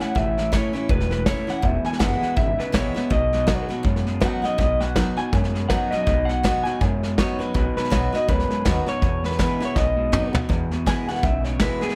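An up-front brushed vintage drum kit with a punchy kick, a woody upright bass, a full-bodied picked steel-string acoustic guitar, a twangy electric guitar riff and a bright, slightly broken-up electric lead with tape echo open this retro, rollicking swung rockabilly excerpt in light reverb, until a drum fill at 9.8 seconds leads into a clean electric guitar solo from 10.5 seconds.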